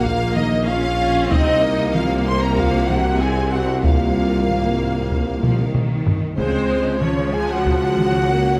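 Bathed in a moderate scoring-stage reverb, this epic, heroic orchestral film-score passage at 94 BPM sets intense, distant violin sections on the melody and a second line, shadowed by an airy, hollow flute in the background, while lush violas fill the middle, mellow French horns hold sustained chords, and focused cellos join rich double basses and a warm tuba underneath, driven by hard-stick taiko that play a fill from 5.4 to 6.4 seconds and stop at 8.3 seconds.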